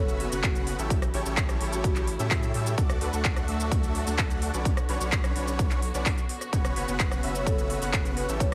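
Festival progressive house at 128 BPM, anthemic and emotional, this brief cut drives a huge, detuned supersaw riff over a deep, saturated sub bass and lush background strings, all three pumping to the sidechain, while a woody soft-mallet marimba melody with delay appears at 0.0 and returns at 7.3 seconds, a crisp-hatted dance kit with cabasa, handclaps and rim clicks enters at 0.1 seconds, and a punchy, up-front electronic kick lands at 0.4 seconds, all under light reverb through F#sus4, A7, D and Bmadd9 chords.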